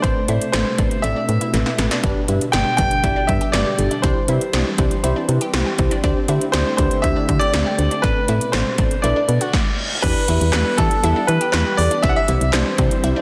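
Driving and nocturnal, this synth-pop passage in E minor moves at 120 BPM in a straight 4/4, cut from a longer piece. A clear, intimate concert grand piano carries the melody up front with a touch of delay, its action noise audible, while a mellow tine electric piano heard through its built-in speakers fills in the accompaniment. Beneath them sit a smooth, slow-attack analog pad with chorus holding sustained chords and a detuned sawtooth pluck with a noise layer and a moving notch spinning arpeggios in the background. A round, dark FM bass with a fast attack anchors the low end, and overdriven 80s electronic drums sit up front, pairing a punchy kick and gated snare with metallic hi-hats, handclaps and crash cymbal, plus a drum fill at 1.5 seconds. The harmony cycles through chords such as Amadd9, G, C and D7sus4 before a reverse cymbal leads into a shift to Em at 10.0 seconds, all set in a moderate digital stage reverb and a dense, heavily limited modern master.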